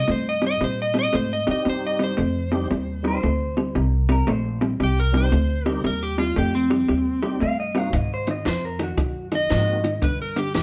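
Mournful and smoky, this C minor electric blues shuffle swings at 115 BPM in 4/4, moving from Cm to Ab7 and then G7#9. A dark, fingerpicked slide guitar carries the melody up front over a compressed, lo-fi electric guitar riff and a woody, growly pizzicato upright bass. A full, lightly overdriven tonewheel organ with slow rotary speaker and chorus vibrato enters at 1.5 seconds, a slightly broken-up second guitar line joins at 3.1 seconds, and a dry, up-front cocktail kit with punchy kick and high-tuned snare arrives at 7.9 seconds, the band playing live together in one room with moderate studio reverb.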